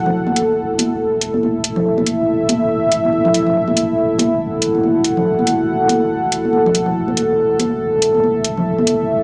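A dark analog pad and a deep, soft wobble bass open this meditative, heavy slice of deep dubstep together, running at 141 BPM in 4/4 with a half-time feel and a 60% swing on the sixteenths, tuned to A4 = 441 Hz. The pad sits up front, holding sustained chords between E4 and F#5 with a moody, full-bodied sawtooth tone, detuned and evolving, with a slow attack, long release, sub octave and a chorus shimmer. Beneath it, the bass holds a low E1 with a warm sine-and-triangle wobble, fast in attack, compressed and also treated with chorus, sitting quietly in the mix. Congas enter at 0.1 seconds, played with soft hands and sounding bright, acoustic and saturated, thrown into a dub echo. An electronic hi-hat joins at 0.4 seconds, metallic and layered, re-recorded in a small room and placed close to the listener. The whole passage is cut from a longer piece and sits in a moderate echo-chamber reverb, with a small-speaker character to the overall sound.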